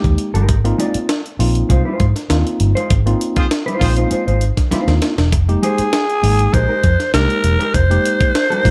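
Funky and cool, this straight-feel funk excerpt at 99 BPM opens with a gritty, pitched-up breakbeat kit with a thumpy kick and high-tuned snare, a round, foam-muted vintage bass up front, worn and slightly out-of-tune tine electric piano stabs, and a dark, clean fingered electric guitar from 0.3 seconds. A distant, roomy horn section in octaves slips in briefly at 3.4 seconds amid a band accent, ahead of a drum fill, before a raspy alto saxophone takes the melody at 5.6 seconds over chords moving from Ab6 to Fm11, all in a dry mix.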